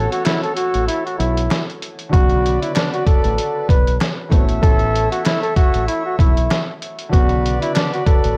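A swung 96 BPM groove in 4/4 anchors this reflective, gritty boom-bap hip-hop excerpt, cut from a longer piece, with a sampler-style drum kit entering at 0.1 seconds and sitting up front: a thumpy kick, a medium-tuned snare and hi-hat, all pitched down, muffled and compressed with a 12-bit grit. Beneath it, a deep dub fingered electric bass holds a dark, round low end, thickened by transformer saturation, while very quiet finger snaps add a human, acoustic touch from 0.2 to 7.9 seconds. The bucket-muted trumpet leads as a jazz-style solo up front, its veiled, raspy tone marked by vibrato, scooped notes and a growling edge. A tight horn section supplies present, lightly vibrato-tinged stabs treated with cassette tape and analog delay, and a woody upright piano sits in the background with natural accompaniment. Over a home cassette recording bathed in studio reverb, the harmony moves between A6 and Bmadd9.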